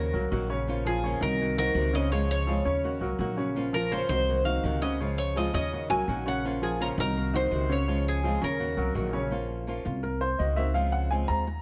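A moderate large-studio reverb surrounds the players, and the top end is soft and rolled off, giving this short Latin cut a warm, nostalgic glow. At a brisk 167 BPM in straight 4/4 and Bb minor, the band circles a repeating Ebm7, Bbm, Cm7b5, Dbmaj7 progression. Up front, the picked Cuban tres carries the melody with metallic double strings, some of them octave-doubled, until it drops out at 8.9 seconds. Beside it, a fingerpicked flamenco guitar supplies accompaniment, while an upright bass plays pizzicato on steel strings with a woody, thumpy tone placed close in the mix. A dark, mellow grand piano with a worn, intimate character and audible action noise spins arpeggios throughout, then takes a solo from 9.3 seconds to the end.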